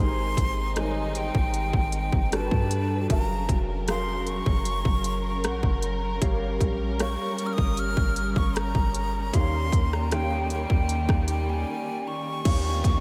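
This contemporary R&B excerpt moves at a slow 77 BPM in 4/4 with a sensual, longing mood, drifting through lush chords from Abmaj7 to Gmaj7, Gbmaj7, Gm7b5 and Eb7 before landing on Eb9. A breathy jazz flute carries the melody high in its range, its metallic tone unsteady with vibrato, a soft attack and lifted highs, trailed by a delay. Beneath it, an intimate concert grand piano with audible action noise and long sustain plays the accompaniment through an ensemble chorus, stepping forward with a fill at 5.0 seconds. A dark, woody string section holds bowed chords with light vibrato, pumped by sidechain, while a deep, boomy 808-style bass with a sine core, noise layer and fast, decaying attack anchors the low end. A produced trap kit enters at 0.4 seconds with a hard-clipped kick, crisp hi-hats, rim clicks, crash cymbal and a tape-warm sheen, a brief break arrives at 11.7 seconds, and an electronic downlifter sits in the background at the very end. 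The whole mix is dreamy and soaked in a huge ambient reverb.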